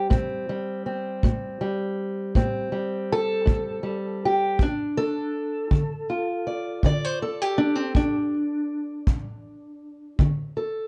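Acoustic country blues with a soulful, brooding mood, moving at a slow 54 BPM in a 12/8 metre with a straight feel. A fingerpicked steel-string acoustic guitar carries the melody, its dark, boxy parlour tone sitting up front and spanning A2 to D5. A kick drum, punchy and up front with a studio-room character and brushes, plays from 0.1 to 10.4 seconds. The harmony moves from Am7 to Dm at 4.6 seconds. Moderate studio reverb and a mellow production that keeps the top end subdued give the short cut from a longer piece an intimate, shadowed sound.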